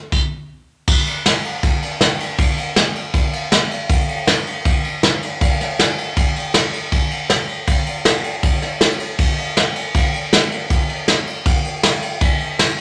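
A soft brush drum kit opens the recording at 0.1 s and carries it alone through to 12.8 s, setting up a rowdy, retro rock feel. The tempo sits at a brisk 159 BPM in a straight 4/4, cut from a longer piece. Brushes play a medium-tuned snare, a punchy kick, a ride cymbal and a crash cymbal, all heard in a natural, acoustic studio room. The kit sits up front in the mix, close and present. A moderate large-studio reverb adds a roomy tail around the hits, giving the spare drum part a lively, open character.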